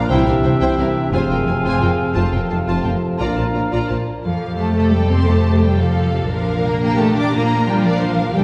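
A lush, vibrato-rich violin section carries the melody through this adventurous, heroic cinematic fragment in 6/8, joined by a clear oboe, a hollow, airy flute section, a background clarinet, a mellow French horn section and a very quiet, bright trombone section that all fall away after about 4 seconds, while a distant second violin section with portamento, smooth violas, expressive cellos, a rich double bass section and a ringing harp's arpeggios continue past the build-up to 8.4 seconds, all heard from further back in a wet scoring-stage reverb.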